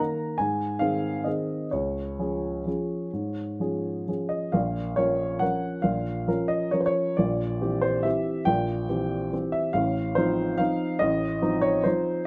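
A woody upright piano with long sustain sits up front in this playful, elegant solo classical waltz in D-flat major, moving in a rubato 3/4 between 124 and 151 BPM, turning at 4.5 seconds from its opening phrase to a second passage that darkens into B-flat minor, all captured by close, detailed microphones with light reverb in a short cut from a longer piece.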